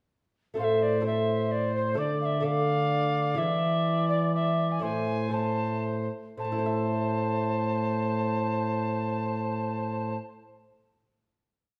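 The recording has a dark, warm production set in a wet recital hall, with a reverb that lingers around the players. This short, complete piece is a solemn, courtly renaissance-style consort dance in triple metre and A harmonic minor, moving at roughly 111 to 129 BPM and slowing down from 2.7 to 6.4 seconds before settling on a long final chord at 6.4 seconds. A mellow, airy soprano recorder carries the melody up front, its wooden tone marked by tongued notes, chiff and expressive vibrato, though it sounds somewhat distant. Beneath it the cor anglais adds a second line with a soft attack and light vibrato, playing chords in the rhythm of the tune and sustained chords. A clear, close-miked trombone holds a sustained bass, while a delicate fingerpicked lute with gut double strings, some doubled at the octave, supplies rolled chords from 0.5 seconds. The harmony moves through Am, Dm and E7 before returning to Am.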